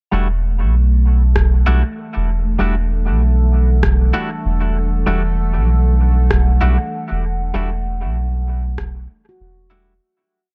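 Ambient dub in E minor at 97 BPM, this short, complete piece settles into a meditative, spacious groove in 4/4 with a swung sixteenth feel, resting on a single Em11 chord. A soft, round sub bass sits up front from the start with a deep dub-style line, while a clean, compressed semi-hollow electric guitar places sparse chord stabs, one shape moved in parallel, trailed by dub echo. A bubbling, resonant sawtooth texture with random filter steps enters at 0.4 seconds and holds a bright high note under chorus and reverb, and a warbling, nostalgic lo-fi pad fades in with slowly shifting sustained chords. A very quiet analog kick and a tape-warm rim click with its own echo tap out a sparse, slow beat from 1.4 to 8.9 seconds. Near the close, a faint handpan rings out one slow, airy loop on F#4 with a touch of 12-bit sampler grit, as the dark, dry mix fades out from 6.7 seconds.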